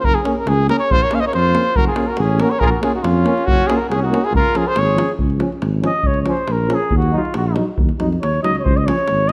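A moderate recital-hall reverb gives this short excerpt of Balkan brass band folk music a roomy, festive glow, with the deep, close davul driving a straight 2/4 at 139 BPM in D-flat major. A mellow cornet carries the melody up front with vibrato from the start, while a dark, punchy tuba with light vibrato holds down the bass. Trombone and euphonium sit in the background as accompaniment, and a clear flugelhorn with a vintage tinge and light vibrato joins as a second line almost at once. The harmony moves between G-flat, B-flat minor and D-flat, touching E-flat minor later on. The cornet drops out at 5.1 s, and from 5.2 s the flugelhorn takes a virtuosic solo that runs to the close at 9.3 s, with the band in classical-style poise beneath it.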